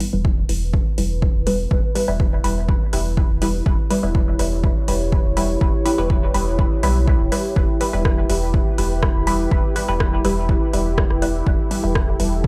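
Cavernous and hazy, this dub techno excerpt moves at 123 BPM in a straight 4/4, sitting on a single E minor chord in E dorian. A punchy, overdriven electronic kick drives the groove alongside a deep house kit of metallic hi-hats and rim clicks, while a soft, round sub bass pumps against the kick and a muted, detuned chord stab plucks short and filtered through phaser and dub echo. From 0.7 seconds a dark, full-bodied analog pad with slow attack and chorus breathes through the mix, all captured in a dry, gritty hardware recording.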